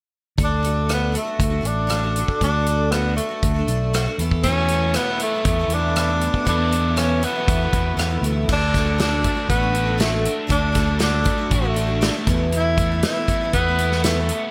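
Folk rock with a heartland rock drive at 119 BPM in D major, this jangly, open-road excerpt sets a clear, distant tenor saxophone melody with light vibrato and delay over a shimmering, octave-doubled twelve-string acoustic guitar bathed in lush chorus, a growly, up-front fingered electric bass and a natural country drum kit with dark cymbals and gated reverb, while a crunchy, double-tracked overdriven guitar riff with ensemble chorus joins in the background at 4.4 seconds, all within a bright 1980s-style digital production.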